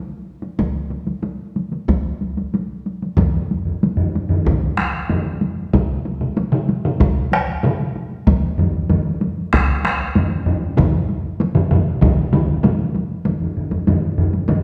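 Japanese traditional taiko drum ensemble music, ceremonial and powerful, moves in a straight 4/4 and speeds up across this short cut from a longer piece. Two taiko ensemble parts open almost together, one struck with hard sticks in a close and dry, up-front sound, the other with heavy sticks that sound distant, as if in a large room. A third taiko ensemble part enters at 3.2 seconds, its hard-stick strokes compressed and saturated, giving the texture a gritty edge as the music moves into a new section. A fourth hard-stick part, again close and dry, joins at 5.7 seconds, thickening the ensemble until it drops out at 12.8 seconds. The whole group sits in a wet recital hall reverb heard from further back in the room, so the dry, forward drums carry against a resonant, spacious wash.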